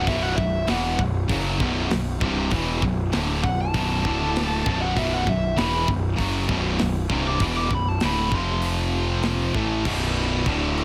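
A dark, high-gain lead guitar solo opens this aggressive, epic heavy metal piece in B phrygian at 98 BPM, over two bright, picked rhythm guitars playing riffs in the background, a punchy fuzz bass up front and a tight studio drum kit with a rolled-off top; the lead drops out at 8.6 seconds, and a soft, bowed string section enters with sustained chords at 9.9 seconds.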